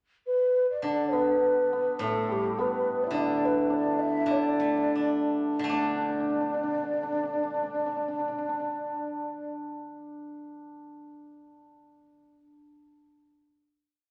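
Festive yet pastoral, this short, complete piece for a Chinese traditional chamber ensemble moves in a free, rubato two-beat pulse and settles into a recital-hall reverb with a long, wet tail. The mellow, hollow xiao opens at 0.3 seconds with a modal melody full of ornaments, its bamboo tone airy with vibrato and a crisp attack, sounding both distant and up front. At 0.8 seconds the hammered dulcimer enters with a shimmering, ringing second line that follows the same tune with its own ornaments, while the steel-string zither, played with fingerpicks, adds a silvery low-string accompaniment. The music slows from 3.1 to 5.7 seconds before landing on a final chord, where the xiao drops out at 9.5 seconds and the plucked and hammered strings ring on until just past 12 seconds.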